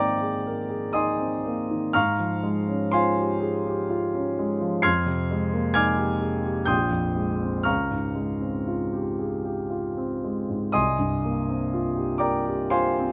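Classical impressionist solo piano, this short passage cut from a longer piece has a mysterious, nocturnal mood. It moves in a slow, rubato 3/4, hovering between 51 and 66 BPM, with the tuning set slightly low at A4 = 439 Hz. A concert grand plays alone from 0.0 to 13.1 seconds, sitting up front with an open, warm tone, deep bass and long sustain across a span from Bb1 to C7. The harmony drifts through colourful extended chords, starting on Abadd9, passing through Dbmaj7#11 and Fm11, and coming to rest on an unresolved C7sus4 at 10.8 seconds. Close, detailed microphones and a light reverb keep the instrument intimate and clear.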